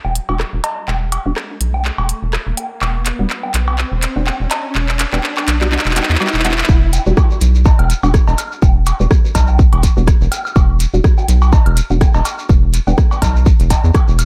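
Minimal techno with a hypnotic, sparse mood and a light swing, cut from a longer piece. A rubbery, hollow square-wave bass with a filter pluck and fast attack sits up front from the start, pumping against the sidechain, while tape-warm woodblock and cowbell, recorded in a large room, tick beneath it. A house drum kit of handclaps, crisp filtered hats and rim clicks comes in almost at once, joined by a muted, detuned sawtooth dub chord stab soaked in phaser, analog chorus and tape echo. The opening section builds with a drum fill and an electronic riser from 1.0 seconds until the drop at 6.7 seconds, where a punchy, layered electronic kick lands up front and a grainy, mellow shekere adds a small-room texture. The stab drops out at 12.9 seconds, and digital ambience wraps the whole mix.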